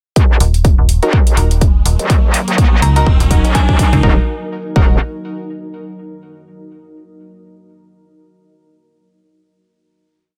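A punchy four-on-the-floor kick, metallic programmed hi-hats and a saturated, wobbling FM bass open this aggressive, bouncy bass house piece in Eb minor at 124 BPM with a 16th-note swing, building from 0.2 s as a chopped, up-front digital FM bass answers the wobble, nasal band-passed sawtooth chord stabs with 12-bit grit and delay push syncopated parallel shapes, a background riser and a drum fill gather tension, a deep, moody pumping pad arrives at 2.0 s, and a crystalline, warbling synth bell adds short answering phrases before everything resolves into a final chord at 4.0 s within a digital ambience.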